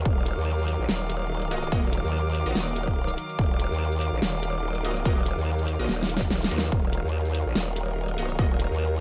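Half-time 4/4 at 144 BPM with a slight 16th-note swing drives this menacing, heavy wobble dubstep excerpt in Eb harmonic minor, where a growling, saturated wobble bass with chorus and overdrive sits up front beside a punchy, tape-warm electronic kick and a dubstep kit of huge snare, metallic hi-hats and shaker, while a distant, reedy studio string section holds dark sustained chords with sidechain pumping and a bold, detuned sawtooth stab like an orchestra hit flickers in the background through phaser, delay and its own reverb, all in a dry mix with a drum fill at 5.9 seconds.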